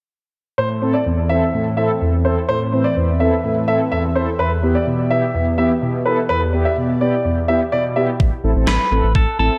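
Synth-pop in A minor at 126 BPM with a cool, melancholic mood, where from 0.6 s a clear baby grand piano line with analog delay, dark, detuned synth brass with chorus and delay, and a smooth, full-bodied analog pad in the background drift over Am and Em in a wet, echo-heavy spring-reverb space, until at 8.2 s a deep, round analog bass and an overdriven, gated 80s drum machine with a thumpy kick and gated-reverb snare arrive, followed at 8.7 s by a clean, compressed electric guitar melody colored by phaser and delay.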